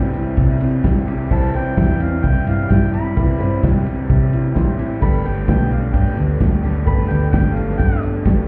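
Folk rock and heartland rock with a jangly, open-road mood, this short cut from a longer piece sets a dark, round hollow-body bass and a loose, up-front indie drum kit beneath a full-bodied picked steel-string acoustic guitar with finger squeak, a bright, overdriven, double-tracked garage guitar riff in the background, a woody upright piano that adds a fill at 4.3 s, a very quiet slow-rotary tonewheel organ and a faint jingly tambourine, while a mellow harmonica with scooped notes and tape echo carries the melody from 1.3 s, the whole mix sounding muffled as if heard through a wall in a club's reverb.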